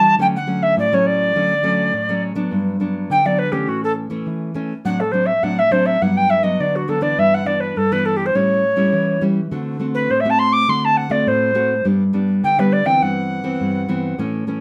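A moderate studio reverb gives this festive, playful samba excerpt a clear, roomy sound at 103 BPM in G major. A mellow alto recorder carries the melody with a pure, woody tone, gentle vibrato and tongued notes with a distinct chiff, taking a solo from 2.5 s over a full-bodied nylon-string guitar. The guitar is fingerpicked in a classical style with fresh strings, moving through chords such as Gmaj7, Em7/G, A7 and D7 before settling on Cmaj7/G.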